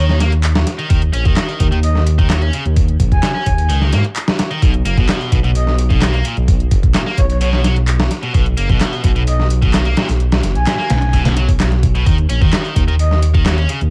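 A dry, close recording layered with vinyl crackle carries this gritty, funky breakbeat fragment at 129 BPM in Eb minor, sitting on an Eb7(no3) chord that drops away at 4.6 seconds and returns at 12.1 seconds. An overdriven, up-front sampler-style soul drum kit with a thumpy kick and medium-tuned snare leads the groove, backed by a quieter, tape-warm house kit of handclaps and hi-hat, while a dark, rumbling detuned saw bass sits heavy underneath. A bright, picked electric guitar riff, crunched with 12-bit sampler grit and dub echo, runs beneath a soft, breathy flute-like synth lead whose melody is coloured by chorus, vibrato, a small-speaker tone and its own dub echo.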